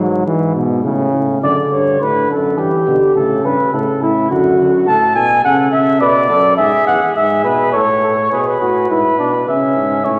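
Classical imitative brass canzona in D major, joyful and elegant at 104 BPM in 3/4, where a warm trombone and a clear, vintage tuba open the accompaniment and bass, a distant, roomy flugelhorn with light vibrato enters on the second line at 1.4 seconds, the trombone stops at 4.7 seconds, and a mellow, up-front cornet with vibrato and a smooth top takes the melody from 4.9 seconds, all set in a wet concert hall reverb with vinyl crackle in this fragment of a longer piece.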